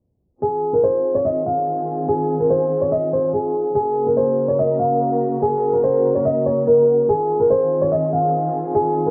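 A mellow baby grand piano sits up front with a long-sustaining melody, carried over a soft-attack bowed string section whose woody, lightly vibrato-tinged chords hover beneath it from 0.4 to 9.1 seconds. This menacing, half-time hip hop fragment, cut from a longer piece, moves from Fm7 to Gb and back to Fm7 as a filter sweep runs throughout. The gritty, low-passed recording carries a light reverb yet stays dry and dark.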